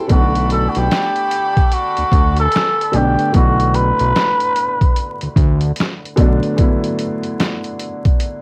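A homespun cassette recording with vinyl crackle and light reverb frames this melancholic, nostalgic lo-fi hip hop excerpt at 74 BPM in 4/4, swung on the 16ths over a Bm7 chord. Compressed, pitched-down sampler drums with a thumpy kick, medium-tuned snare, hi-hat and finger snaps sit up front beside a fat, detuned sawtooth bass with a filter sweep, while a felt-muted upright piano gives soft, intimate accompaniment with audible action noise through all 8.4 seconds. A cup-muted trumpet plays a veiled, raspy jazz solo with vibrato and plate reverb until 5.4 s, above bright, earthy chamber strings that hold sustained bowed chords only until 3.3 s.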